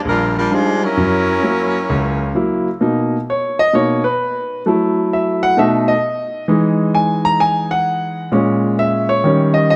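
A natural-sounding grand piano carries this swinging jazz fragment in B major at 130 BPM, comping up front beneath a saxophone section whose brassy, clear ensemble melody, with light vibrato and a smooth top, lasts only until 2.4 seconds. From 2.8 seconds the piano plays alone in a solo that runs through changes such as Bmaj7, F#m7, B7 and Emaj9. Close, detailed microphones and a touch of light reverb keep both parts present and intimate.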